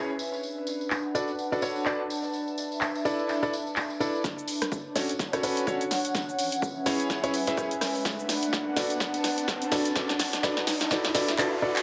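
Piano house at 126 BPM in B dorian with a 16th-note swing, soulful and bittersweet, where an intimate baby grand with audible action noise sits up front playing a filtered, delayed, sidechain-pumped riff over a warbling, nostalgic pad with chorus and a slow, detuned sawtooth-and-triangle glow, while a dry tambourine ticks in the background. A punchy analog drum machine of handclaps, hi-hat, rim click, shaker and snare joins at 0.9 s, and an electronic kick arrives at 4.2 s as the chords move from Bm7 and E7sus4 into Dmaj7 and C#m7 and a build-up with drum fills begins, a background riser coming in at 5.8 s. The mix has a moderate plate reverb and a heavily compressed, radio-like sound, cut from a longer piece.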